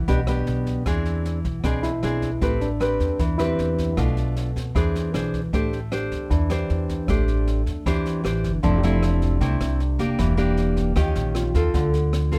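Fingerpicked classical nylon-string guitar, up front with audible finger squeak, opens this melancholic, intimate bossa nova in A minor at 154 BPM alongside woody pizzicato steel-string upright bass and a brushed jazz kit with a high-tuned snare, rim clicks and a boomy kick, while a bright, barky, clean tine electric piano joins at 1.8 s in a dry mix as rich jazz chords such as Am9 and E7b13 give way at 8.6 s to a second passage moving through Fmaj7, D#9 and Dm7 before the cut.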